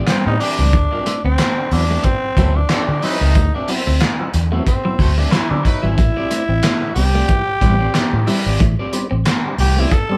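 A moderate live-room ambience frames this hypnotic, cool funk excerpt in A dorian at 92 BPM with a light sixteenth-note swing, where a raspy tenor saxophone solos over Am11 and D13 while a cloth-damped, thuddy, muffled drum kit with handclaps and a fat snare and a round, foam-muted vintage bass sit up front, and a clean, compressed guitar riff with tremolo, a slightly broken-up guitar, percussive tonewheel organ stabs with key click and slow rotary swirl, and a punchy horn section playing a second line until 8.5 s fill the background.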